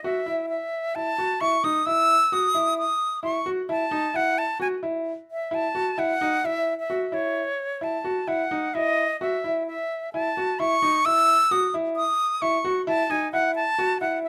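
Contemporary instrumental music in an odd 5/4 metre, this short excerpt carries a pensive, hypnotic mood as it rests on a single F#m7 harmony throughout its 14.3 seconds. A concert flute carries the melody, its airy, expressive tone sitting up front with a soft attack and vibrato, moving through a register from C#5 to E6. Beneath it, a baby grand piano plays arpeggios in a narrow band from D#4 to F#4, its intimate, natural sound marked by long sustain and audible action noise. Both instruments play from the first moment to the last, close-miked and detailed, with the flute standing a little louder than the piano. A light reverb frames the pair, leaving the sound clear and immediate.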